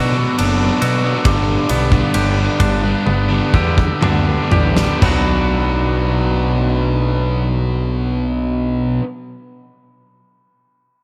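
A cathartic, cinematic post-rock passage in B minor at 59-71 BPM opens on Bm and G with a growling, overdriven picked bass up front, a bright distorted guitar riff alongside an overdriven guitar riff in the background, twangy clean guitar arpeggios and dark, bell-like glockenspiel arpeggios under digital delay, and a very quiet pedal steel holding sustained slide chords; a big rock kit with a fat snare and punchy kick joins at 0.4 s as the music slows, plays a drum fill from 3.1 s and drops out at 5.3 s, leaving the guitars, bass and steel to carry the return to Bm in a small room with light reverb.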